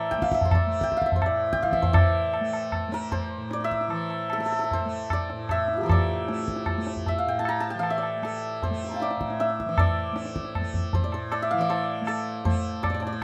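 Introspective and longing, this Hindustani classical passage in 5/4 sets a hammered, shimmering santur melody up front over a softly plucked, buzzing tanpura drone, with low-tuned, ringing tabla entering at 0.1 seconds in a moderate studio ambience as the music gradually speeds up throughout.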